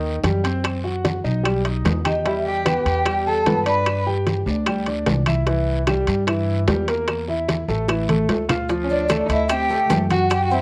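A lively, sophisticated Afro-Cuban jazz groove runs at 149 BPM in straight 4/4, driven by low-tuned congas and bongos in the background, close, ringing metal-shell timbales, raspy guiro and woody claves, with a drum fill at 7.9 seconds and grainy maracas joining at 8.7 seconds. Up front, a thumpy gut-string upright bass plays pizzicato beneath a brilliant grand piano accompaniment colored by cassette tape and plate reverb. In two short passages, the first at 2.1 seconds, a dark vibraphone with fast motor vibrato carries the melody over a focused, boxy bowed violin, all captured as a home cassette recording in a moderate studio room.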